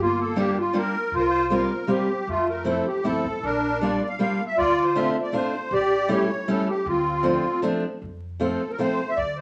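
A reedy, shimmering musette accordion carries the melody over a woody, thumpy pizzicato upright bass from the start, joined at 0.4 seconds by an up-front fingerpicked steel-string acoustic guitar, in this bittersweet, nostalgic musette waltz excerpt in D minor at 157 BPM, whose chords move from Gm7 through Fmaj7 and A7 to settle on F, all set in a wet studio reverb beneath a layer of vinyl crackle.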